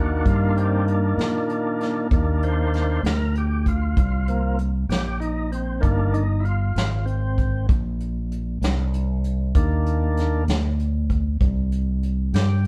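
Soulful and mournful, this slow blues in C minor moves at 65 BPM in a straight 12/8, opening on a Cm7 chord in this short section cut from a longer piece. An overdriven tonewheel organ carries the solo, holding sustained chords with a thick, gritty tone, audible key click and a slow rotary speaker effect. Beneath it, a fretless electric bass sits up front with a bright, direct-and-amped sound in its low register. A vintage brush drum kit enters at 0.3 seconds, playing hi-hat, snare and kick with brushes, giving a natural acoustic feel with a medium-tuned snare, punchy kick and rolled-off top. The band plays live in one room, with a moderate studio reverb around the performance.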